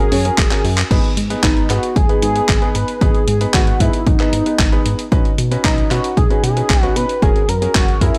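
A straight 4/4 pulse at 114 BPM drives this nostalgic, danceable italo disco excerpt in G# minor, where a punchy, tape-warm electronic kick enters at 0.4 s and a brief drum fill at 0.5 s leads into the main section at 0.9 s, alongside a gritty, compressed sampler-style kit of crash, handclaps and hi-hat, both kit parts carrying studio reverb. A glossy, dark chorused synth bass sits under the chords F#add9, G#m and Badd9, while an intimate concert grand piano with audible action noise plays stabs roughened by vintage 12-bit sampler grit. On top, a thick, nasal, detuned unison lead with vibrato carries the melody through subtle chorus, cassette tape colour and tape echo, all within a dry, gritty hardware-style recording.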